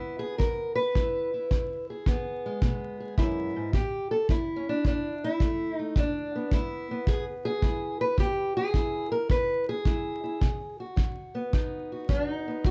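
Rollicking and gritty, this short acoustic country blues cut has a swinging feel, led by a boxy parlour steel-string guitar, fingerpicked up front and carrying the melody from low to mid range over a simple E, A and B chord movement. A punchy, airy kick drum enters at 0.4 seconds and sits up front beside it, while a small room's ambience and vinyl crackle give the shadowy production a worn, intimate character.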